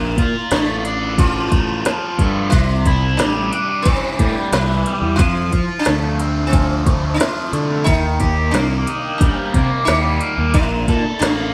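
An up-front fuzz bass and a biting, double-tracked overdriven guitar riff coloured by phaser open this hypnotic, trippy psychedelic rock excerpt, joined just after the start by a straight 4/4 pulse at 90 BPM from an electronic drum kit, with deep kick, woody snare and crisp hats given a tape-warm, small-room character. Over them a buzzing, shimmering sitar carries the melody, its sympathetic strings ringing as the chords move from Bbmaj7 through Cadd9, F and Eb, all heard as a band playing live in one room with light reverb.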